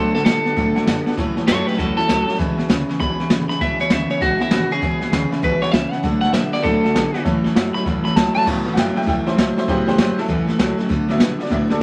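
Vinyl crackle and a moderate studio reverb frame this rollicking, retro rockabilly cut at 198 BPM with a swung feel in A major, where a twangy, slightly broken-up electric guitar carries the melody through spring reverb until 8.5 seconds, a second gleaming electric guitar through a small old amp drives a low riff with a warbly pitch drift, a picked dreadnought acoustic guitar with fresh strings and a jangly, metallic tack piano fill out the background, a woody, thumpy upright bass sits underneath, and an up-front brush kit with dark cymbals and a boomy kick keeps time, before the piano takes a honky-tonk solo from 8.5 seconds to the end at 11.8.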